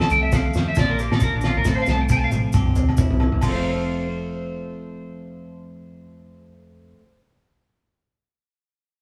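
A bright, twangy clean electric guitar takes a solo over a thuddy, cloth-damped drum kit and ringing agogo bells as this carefree, lightly swung highlife excerpt opens at 136 BPM in F major. Alongside them, a slightly broken-up electric guitar picks arpeggios up front through spring reverb, while a round, dark fingered bass and grainy maracas join at 0.1 s. The muffled, gritty kit plays a fill from 1.7 s and stops with the bells and maracas around 3.5 s as the chords move from F through Bb and C back to F, leaving the guitars and bass playing on in the stone room before the cut.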